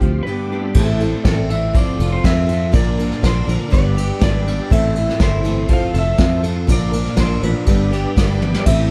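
A jangly folk and heartland rock passage at 121 BPM opens with most of the band already playing. A dark, compressed electric slide guitar carries the melody over a bright picked steel-string acoustic guitar, whose finger squeaks sit in the background. Beside it, a slightly broken-up electric guitar plays a riff through ensemble chorus. A round, foam-muted fingered bass and a soft brush drum kit anchor the low end, the kit sitting up front yet sounding roomy and distant with a tight kick and medium-tuned snare. Very quietly underneath, a shouting tonewheel organ holds sustained chords through a slow rotary speaker, and from 0.7 seconds a reedy, worn, slightly out-of-tune electric piano adds fast tremolo through its built-in speakers. After a brief break, the chords cycle warmly through G, Am, F and Bb with little reverb, and a drum fill arrives at 8.4 seconds near the end of this cut from a longer piece.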